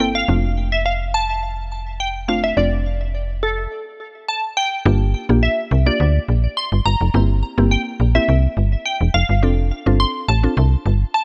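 Driving and confident, this dance-pop excerpt moves at 105 BPM in a straight 4/4, cut from a longer piece. A glassy, crystalline wavetable pluck carries the melody up front, its warbling, detuned tone shaped by ring modulation, a filter sweep, chorus and a digital delay. Beneath it, a woody, round, mallet-like synth pluck supplies full-bodied, percussive accompaniment with its own chorus. Anchoring the low end, a snappy, metallic slap-like FM bass sits up front with a quick, decaying attack. The harmony moves from F6 through Gm7 and C7/G back to F6. A stop arrives between 3.7 and 4.9 seconds before the second section begins, and everything sits in a digital ambience through the end at 11.2 seconds.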